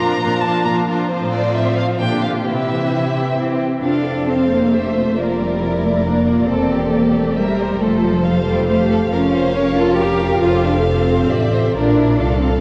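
An up-front cello section carries a smooth, even bass line in this stormy, urgent excerpt from a quick classical-period movement in triple time, beneath rich, vibrato-laden violins on melody and second line and a focused viola accompaniment. At 3.8 s the double basses join the low end, and a mellow French horn section enters in the background with sustained chords. A wet church reverb and worn, warbling cassette tape with pitch drift cloud the recording.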